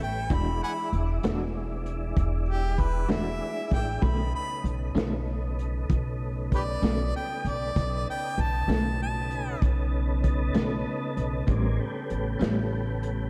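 This excerpt of slow blues in 12/8 sounds dreamy and soaked in a lush hall reverb, with a laid-back, swaggering mood. A clear harmonica carries the melody in a jazz style, its soft-attack notes scooped and touched with light vibrato and tongue slaps, before it stops at 9.6 seconds. Underneath, a smooth tonewheel organ holds sustained chords through a slow rotary speaker and chorus vibrato, while a woody, dark upright bass sits up front with pizzicato steel strings. A very quiet electric guitar through a small old amp adds slightly broken-up, picked accompaniment, and a crunchy breakbeat kit of hi-hat, kick and medium-tuned snare brings a gritty, saturated punch with a rolled-off top. The harmony moves from E9 to B9 at 4.0 seconds and on to A9 at 11.5 seconds.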